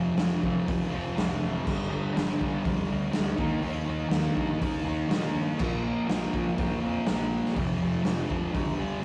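Gritty and swaggering, this short garage rock cut at 122 BPM in a straight 4/4 pairs an up-front, double-tracked fuzz guitar riff moving through F, G5, Eb, Bb5 and F5 with a growling, overdriven picked electric bass sitting in the background and a raw, saturated acoustic drum kit with a punchy kick, medium-tuned snare, hi-hat and crash that plays from 0.2 to 8.7 seconds, all captured as a rough rehearsal-room recording with light reverb.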